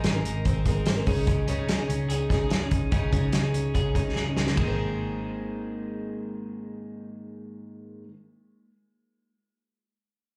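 Jangly indie pop at 145 BPM in Ab major, nostalgic and breezy, caught live through a club PA, where a shimmering fingerpicked twelve-string acoustic guitar and a bright, twangy twelve-string electric guitar playing arpeggios through analog delay and slapback echo ring over Abadd9 and Dbsus2 chords, a dark, foam-muted picked bass holds the low end, and a punchy, up-front vintage drum kit with dark cymbals drops out after a fill at 4.2 seconds, leaving the guitars and bass to carry on.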